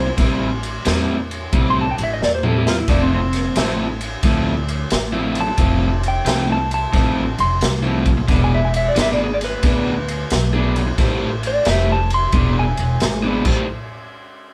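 A swung 4/4 shuffle at 89 BPM drives this soulful, mournful electric blues in A minor, where a slightly broken-up slide guitar solos over Am7, Fmaj7 and E7 changes, backed by a dark, overdriven, picked guitar riff, a woody pizzicato upright bass and a gritty, boomy garage drum kit with a pumping small-room sound that breaks into a fill at 2.2 seconds, the band playing live together in one room with light reverb.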